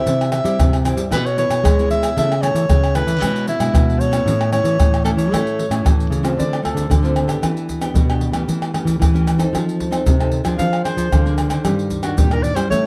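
A straight 4/4 samba-and-choro groove at 114 BPM rides on up-front maracas, pandeiro, tamborim and a tight surdo in a small room. Beneath it, a dark, thumb-plucked nylon-string guitar carries the bass while a second, full-bodied fingerpicked nylon-string guitar comps with audible finger squeak through chords such as C, Dm7 and Ebmaj7/G. A breathy, whispered soprano saxophone with light vibrato and analog delay sings a bittersweet, nostalgic jazz melody, turns to an intimate solo at 6.4 seconds, drops out at 7.1 and returns at 10.6 in this dark, lightly reverberant excerpt from a longer piece.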